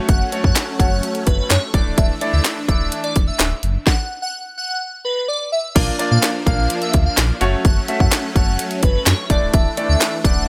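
A house drum kit with a punchy kick, cracking snare, handclaps, hi-hat and crash drives this upbeat, carefree dance-pop clip at 127 BPM in D major, over a deep sine sub bass with octave, while a very quiet group handclap adds crisp, human texture from 0.6 to 3.5 s. A clear, intimate concert grand piano with audible action noise and lush chorus carries the accompaniment beside huge, detuned supersaw chords in the background, and an airy, dreamy lead with chorus, phaser and vibrato sings the melody, all pulsing with sidechain pumping except the drums and handclap. The bright 1980s-style digital production keeps reverb minimal, cycling through F#m, Dsus2, a brief break in the harmony and Bb across two drop passages, with the second starting at 5.8 s.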